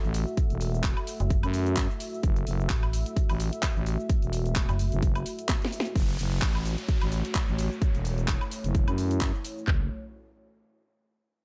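A dry mix with little reverb opens this swaggering, bouncy bass house excerpt in F# minor, cut from a longer piece and moving at 129 BPM with a light swing on the sixteenths. A growling, thick FM bass sits up front from the start, its fast attack and sustained tone pumping against the sidechain, while a deep, moody analog pad of detuned sawtooth and triangle waves with a sub octave holds dark chords underneath, softened by chorus and also pumping. Two layered, tape-warm house drum kits drive the groove. One carries handclaps, hi-hat, shaker, snare and woodblock up front from a small room. The other, entering at 0.4 seconds, brings kick, claps and toms in a large-room sound. Between 1.2 and 4.9 seconds a metallic, digital FM bass with a mellow, decaying edge and overdrive joins in the low register, and a drum fill closes the opening drop just before 6.0 seconds. From there an electronic downlifter sits faintly beneath the bass and drums as the passage heads toward its next section.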